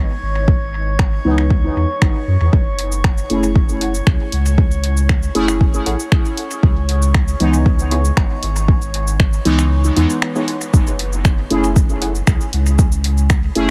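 A round, sine-toned sub bass and a drifting glass-harmonics texture open this deep, cavernous dub techno excerpt in F# minor at 117 BPM, the bass up front and pumping under the sidechain while the calm, glassy pad floats high with chorus and its own reverb. A deep, layered electronic kick arrives at 0.5 seconds, and a deep house kit of cabasa, finger snaps and hi-hat follows, its small-room sound thrown into dub echo. A juicy, detuned polysynth of square and sawtooth waves plays dark stabs through chorus, phaser and a cassette-tape grain, its resonant filter sweeping with a moving notch across the opening stretch. From 3.8 seconds a muted, filter-plucked chord stab sits in the background, short and phased, trailing dub echoes as the harmony moves from F#m7 to C#m7. The kick drops out between 9.7 and 10.7 seconds before the groove resumes on F#m7, all of it heard through a dry, heavily compressed radio-like sound dusted with vinyl crackle.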